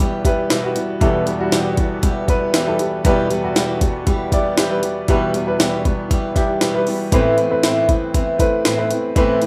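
Piano-driven pop in E minor at 118 BPM, this short excerpt cut from a longer piece has a driving, dramatic mood in a straight 4/4. A clear, woody upright piano sits up front with a smooth, vintage character and long sustain, providing accompaniment from E2 to D5 across the full 9.5 seconds. A fingerpicked steel-string acoustic guitar plays a riff between E2 and G4, its concert tone adding a warm acoustic layer. A jungle sampler-style drum kit, also up front, brings a gritty, compressed, pitched-up sound with a thumpy kick, high-tuned snare and hi-hat, re-recorded in a large room. The harmony holds on Em before moving to Amadd9 at 7.1 seconds, all set in moderate studio reverb with a rough home demo mix.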